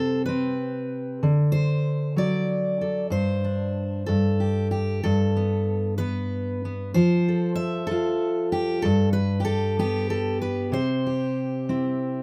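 Peaceful and gentle, this short folk passage features a single fingerpicked steel-string acoustic guitar playing alone throughout its 12.2 seconds. The pulse sits at a slow 63 BPM in 6/8, counted in dotted quarters, but the feel is rubato, so the time bends freely. The jumbo-bodied guitar sounds full-bodied and warm with fresh strings, sitting up front in a light reverb. Its harmony moves from Amadd9/C through D7 and Gsus4, passes through a brief stretch outside any chord, then continues through Gadd9, F and G before settling on C. Tuned to A4 = 439 Hz and spanning G2 to E5, it plays as a calm fragment cut from a longer piece.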